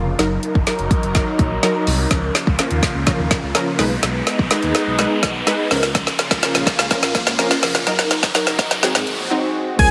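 Upbeat and carefree, this dance-pop build-up in Db major at 125 BPM pulses with sidechain pumping on a punchy, wave-folded unison pluck, a thick detuned pad shimmering with chorus and phaser, and a deep sine sub bass with octave, while an up-front deep house kit with woody snare and dark hats drives through a drum fill, an electronic riser and a filter sweep, until a fat analog lead lands on a single Ab5 at 9.8 seconds.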